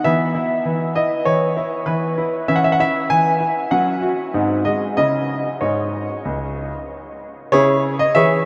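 Restless yet elegant, this brief cut from a longer classical-period piano sonatina unfolds in C# minor at 96 BPM in 4/4, its beats falling unevenly. A solo grand piano carries everything, clear and smooth with a vintage character and short sustain, sitting up front while spanning C#2 to G#5. The opening passage, running from 0.0 to 7.5 seconds, moves through a harmony that starts on E5, settles onto C#m/E at 2.5 seconds, touches F#5 and a G#7, then resolves back to C#m at 5.0 seconds. Around the instrument, a huge, wet ambient reverb with an 8.9-second decay suggests a vast, echoing hall, letting each crisp note bloom into a lingering haze. The piano plays for the full 8.5 seconds, its poised phrasing given a faintly uneasy lilt by the irregular pulse.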